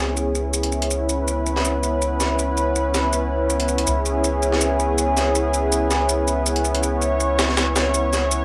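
A gritty, compressed breakbeat kit of hi-hat, shaker and medium-tuned snare enters up front at 0.2 s, driving a frenetic drum and bass and jungle groove at 162 BPM with a light 53% swing on the 16ths, its filtered hits carrying a small-room character. Beneath it, a round, mellow dub sub bass holds a deep C#2, while a lush, detuned unison pad with chorus and an airy noise layer sustains a C#m7 chord in C# minor from B3 to C#5, shaped by a filter sweep across the whole passage. The sound is dry and hardware-rough yet bathed in echo-chamber reverb, giving this fragment of a longer piece a nostalgic glow, with tuning set to A4 = 436 Hz.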